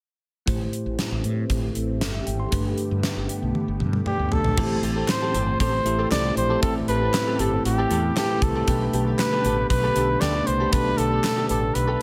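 1980s-style pop in A minor at 117 BPM, nostalgic and dramatic, opens on a bell-like tine electric piano, a swirling phased analog pad in the background, a round fretless bass and an up-front gated drum kit with a fat snare and tight kick, shifting between Am7 and Gadd9 chords. During a drum fill from 3.5 seconds, a vibrato-laced solo flugelhorn carries the melody through digital delay at 4.1 seconds, joined at 4.6 seconds by a twangy, direct-recorded clean guitar riff with chorus and delay tucked behind. Very quiet, crisp handclaps enter at 5.1 seconds, all set in light small-room ambience in this excerpt from a longer piece.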